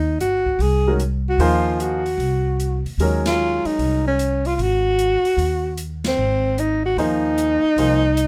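A breathy, whispered alto saxophone carries the melody up front in this spiritual, open modal jazz excerpt, its close-miked, intimate tone shaped by vibrato, soft attacks and scooped notes. Pizzicato upright bass, woody and bright with steel strings, also sits forward, while an airy acoustic drum kit with dark cymbals and a boomy kick swings low in the mix from a small room, and a warm baby grand piano joins shortly after the start and returns briefly near the end. The band hits accents at 3.2 and 6.0 seconds over a single Ab7 chord, bathed in light reverb.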